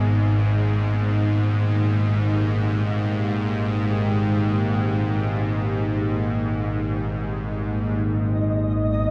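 Floating in free time, this cut from a longer dark ambient drone piece feels unsettling and cavernous: a tense, nasal, bowed-like drone sits up front in the low register, bright and string-like with vibrato, beneath a deep, moody pad of sustained chords that is softened by chorus. At 8.1 seconds the harmony moves from D# to G#m as a filter sweep passes over the drone, and at 8.3 seconds a faint, flickering grainy texture enters high above. A cathedral reverb with a 5.5-second decay gives the dark production its vast, wet space.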